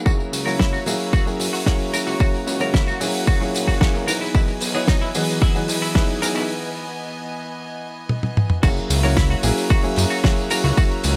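A straight 4/4 nu-disco groove, sunny and groovy, sets a punchy, up-front electronic kick beside a dry 70s drum kit with dark cymbals and a fat snare, over a thick, detuned sawtooth analog bass, while a worn baby grand piano with tape echo and sidechain pumping carries the accompaniment, a bright, clean semi-hollow electric guitar plays a compressed riff, and an earthy chamber string section with a smooth top holds sustained chords in the background, the passage building up through a break at 6.5 seconds and a drum fill at 8.1 seconds that launch the drop at 8.6 seconds.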